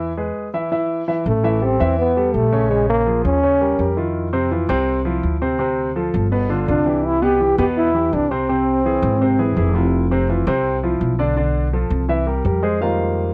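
A break from a warm grand piano and a woody, thumpy pizzicato upright bass opens this driving, sophisticated Afro-Cuban jazz excerpt at 166 BPM, before a mellow solo trombone enters up front at 1.3 seconds with vibrato and scooped notes over shifting jazz harmonies such as Am9, Cmaj7 and Fm11, all colored by the warbling pitch drift of worn cassette tape in a dry, close sound.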